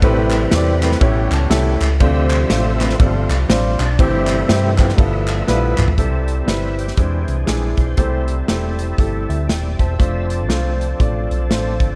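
A swung 4/4 groove at 120 BPM carries this hopeful, uplifting uptempo gospel passage in C major, with a punchy, up-front acoustic drum kit and a dark, round hollow-body electric bass beneath chords that move from Am9 through G13 to C6 and F6. A warm baby grand piano plays accompaniment with short fills, while a gritty, overdriven tonewheel organ holds thick sustained chords through a slow rotary speaker and chorus vibrato, adding a fill of its own near the close. Crisp group handclaps, distant as if in a large room, join at 0.3 s and stop at 5.9 s, just as a drum fill leads into the second section at 6.0 s, and light studio reverb surrounds the mix.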